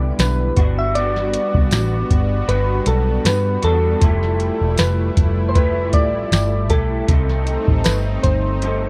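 A slightly broken-up, lo-fi electric guitar through a small old amp, with a warbly chorus drift, opens this laid-back, nostalgic bedroom-pop excerpt alongside a thick, detuned unison pad and a dark, foam-muted picked bass sitting up front, all at a relaxed 78 BPM in G major with a gentle 16th-note swing. From 0.2 seconds, mellow electric-piano-like synth keys carry the melody through lush chorus and tape echo, while a tape-warm analog rhythm box adds a deep kick, crisp snare and metallic hats, and a jingly tambourine sits in the background. The chords move from Em7 through Gmaj7 and Fmaj9 to Cm6, captured in a dry, close 1970s-style studio sound.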